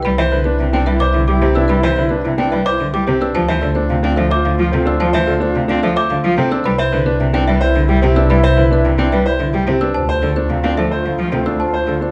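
A bowed double bass section sounds from the first moment of this bright, propulsive minimalist passage, lush and close at the front of the mix. A woody marimba carries the melody in the background, an airy alto flute with vibrato traces a second line, and a bell-like, slightly out-of-tune celesta spins delicate arpeggios high above. A single bowed cello joins at 0.1 s with a rich, expressive accompaniment marked by portamento, and a clear baby grand piano adds open arpeggios up front from 0.2 s. The music moves at 109 BPM in a straight 3/4 in C major, the harmony alternating between Cmaj7 and Dm7 every few bars. A moderate large-studio reverb and a dark production give the whole ensemble a spacious glow, and the excerpt is cut from a longer piece.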